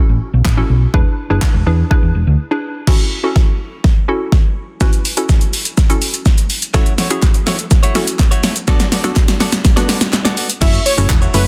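Dance-pop at 124 BPM in F# minor, bittersweet and driving, this excerpt opens on a hollow, warbling square-wave pluck with chorus and sidechain pumping, joined by a dark, round hollow-body bass and a deep house kit with a deep kick, fat snare, crash, hi-hat, shaker and handclaps sitting up front. After a short break, a build-up with a drum fill runs from 2.9 to 10.6 seconds, where the bass drops out while a bright, clean, direct-recorded electric guitar riff with subtle chorus and a crisp group handclap in the background join, moving through F#m7, A6 and Bm7. At 10.6 seconds the bass returns alongside a catchy, punchy sawtooth unison lead with vibrato and a filter sweep, all within a dry, dense, heavily limited modern master.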